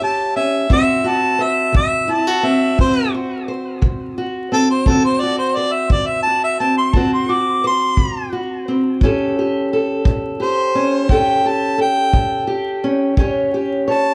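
A mellow harmonica and a fingerpicked steel-string acoustic guitar open this rollicking, soulful acoustic country blues together, in a 12/8 metre with a straight feel. The harmonica carries the melody up front in a jazz-inflected solo, its scooped notes sounding distant and roomy through an analog delay. The parlour guitar, also up front, gives a dark, boxy fingerpicked accompaniment, moving from A7 to D7 at 0.7 seconds and back to A7 at 9.0 seconds. A tight kick drum enters at 0.7 seconds, played with brushes and set back in the studio room with a rolled-off top, and it drops out at 13.3 seconds. Moderate studio reverb and a layer of vinyl crackle give the sound an aged, intimate character, and the passage is cut from a longer piece.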